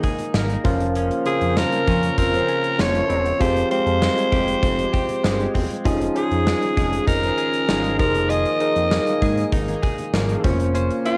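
1980s-style pop with a moody, urgent edge, heard as a cut from a longer piece on a home cassette recording in a small room. A bell-like tine electric piano and punchy gated drums of kick, snare, hi-hat and tambourine carry the groove. A fat, detuned analog bass enters at 0.3 s alongside very quiet synth brass stabs. A very quiet, dark, shimmering pulse-width pad sustains chords beneath, while a twangy, clean electric guitar riff with chorus and delay sits in the background. From 1.3 s a raspy, gritty alto saxophone takes the lead up front, forceful and edged with light vibrato.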